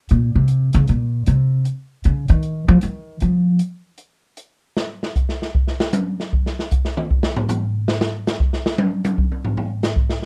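Upright bass steps forward with a woody, pizzicato solo that ends at 3.6 seconds, backed from the start by the open jazz drum kit, dark and boomy in a small room, which then takes over with a solo from 4.8 seconds in this playful, swinging small-group jazz passage cut from a longer piece.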